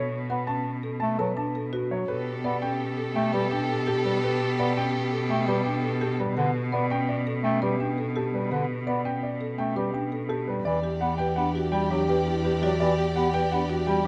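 An up-front, rich solo cello anchors this hypnotic, meditative excerpt of minimalist classical pattern music in 6/4, beneath a smooth, short-sustained grand piano melody, woody rosewood marimba arpeggios and a vintage bass clarinet accompaniment, while a mellow, distant French horn with light vibrato and a focused, bowed studio violin section holding sustained chords join at 2.1 s, drop out at 6.2 s and return as a new section begins near 10.7 s, captured with close, detailed microphones in light reverb.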